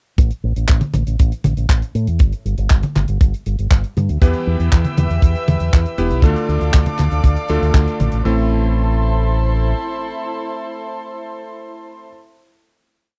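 Italo disco in A minor at 119 BPM, this short, complete piece has a nostalgic, bittersweet mood and a straight 4/4 feel. From 0.2 seconds a fingered electric bass, run through an envelope filter and sitting up front, drives a sequenced sixteenth-note line, while a tight, polished kick holds a four-on-the-floor pulse and a lighter funk kit adds handclaps, closed hi-hat and high toms in a disco machine beat. At 4.2 seconds a dark, reedy string section enters with distant, gut-string sustained chords and light vibrato, joined by a bright, clangy electric grand piano whose short, cutting stabs push syncopated accents through a tape echo. The harmony moves from A5 to G5, Em and Dm before landing on Am at 8.2 seconds. The kick has dropped out just before this point, and the kit stops there. The bass carries on until about 9.7 seconds, while the strings and piano hold a final chord until about 12 seconds. 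The sound is dry and close, in the manner of a 1970s studio recording.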